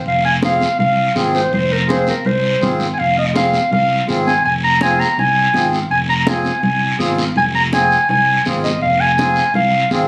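A warm, classical-style clarinet leads this driving cumbia fragment, carrying the melody up front from 0.1 seconds. Beneath it, a reedy accordion with a slow beating quality supplies the accompaniment, also sitting forward in the mix, while a fingered electric bass plays a direct, amped low line. Raspy, vintage-sounding guiro and bright, high-tuned congas with a damped, close and dry skin fill out the percussion, the congas entering at 0.2 seconds. The tune stays on F minor at a danceable 164 BPM in straight 4/4 time, holding one section throughout its roughly ten seconds. Captured on a phone in a club-like room with moderate reverb, the sound has a live, in-the-venue feel.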